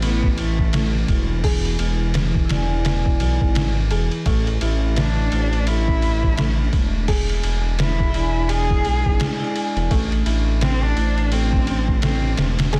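A pitched-down, compressed sampler-style drum kit drives this melancholic, cinematic trip hop excerpt at 85 BPM, with a thumpy kick, a medium-tuned snare, hi-hat and ride cymbal overdriven and sitting up front in a 16th-note swing. Beneath it a dark detuned saw bass rumbles deep and saturated, while a felt-muted upright piano plays soft arpeggios in the background, its action noise audible and its notes given a tape echo. A bowed cello carries the melody from the start, expressive and distant, with vibrato and portamento, roughened by 12-bit sampler grit and trailed by dub echo. A warbling, lo-fi tape-like pad holds very quiet sustained chords through chorus and phaser, and at 2.5 s a hard-mallet vibraphone enters with a metallic, ringing accompaniment under harmonic tremolo and tape echo until 11.2 s. The harmony in A harmonic minor moves between A5 and E7 before settling on Am at 9.9 s, all within a dense, heavily limited modern master and a digital ambience.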